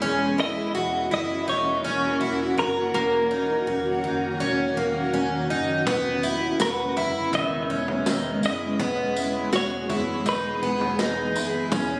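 Ethereal and blissful, this dream pop excerpt at 82 BPM in E lydian floats on a cloudy, slowly evolving granular pad and shimmering, octave-doubled twelve-string acoustic arpeggios with subtle chorus and delay, while a dark, foam-muted electric bass sits low, a clean hollow-body electric guitar sings the melody through spring reverb from 0.4 seconds, and a vintage drum kit with punchy kick, tambourine and toms enters at 5.9 seconds, all wrapped in a huge ambient reverb with the character of a phone recording in a club room.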